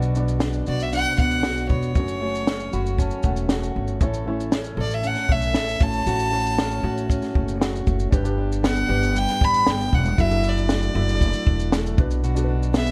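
Acoustic pop at 117 BPM, heartfelt and sunny, in which a rich, reedy bowed violin carries the melody up front from 0.7 seconds over a full-bodied fingerpicked jumbo steel-string guitar, a mellow, long-sustaining upright piano in the background with a fill at 2.5 seconds, a woody, thumpy pizzicato upright bass on gut strings, and a compact cocktail kit of tight kick, high-tuned snare and shaker with a rolled-off top, all dry with audible lossy artefacts as the chords move from Bm through F#m and A to G and Dadd9/F# in this excerpt.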